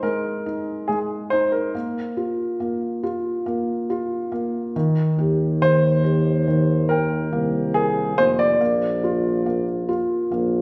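A straight, unhurried 4/4 pulse carries this hopeful, heartfelt pop excerpt, where a clear, polished baby grand piano sings the melody up front while a soft, thick-felt upright piano fills in intimate, muted accompaniment alongside it over chords moving from Ab5 to Bb5, Eb and Bb. At 5.2 s a mellow tuba enters on the bass line, sounding distant and roomy, with light vibrato and scooped, jazz-style notes. The whole performance sits in a recital hall's wet reverb, lending it the open resonance of a church or concert space.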